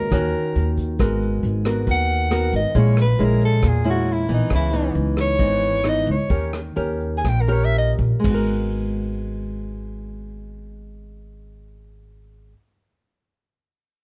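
Bossa nova in an intimate, smooth mood, cut from a longer piece, where a clear soprano saxophone with light vibrato and a soft attack takes an up-front, jazz-style solo from 1.0 to 8.2 seconds as the pace slows from 4.5 seconds, over fingerpicked nylon-string guitar, a woody pizzicato upright bass, a vintage brush kit with a punchy kick and rim clicks, and a grainy, bright egg shaker that drops out at 4.5 seconds, set in a dark, dry production.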